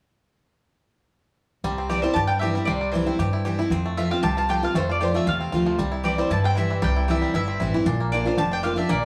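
Bluegrass at a brisk 232 BPM in swung 4/4 and C mixolydian, this joyful, virtuosic excerpt from a longer piece opens at 1.6 seconds with a twangy fingerpicked banjo melody, a bright, full-bodied picked dreadnought guitar with audible finger squeak, and a dark, thumpy pizzicato upright bass up front, joined at 1.9 seconds by a woody, double-strung mandolin carrying a high melody through tape echo, all moving over C, F and Bb chords as a band playing live in one room with moderate studio reverb.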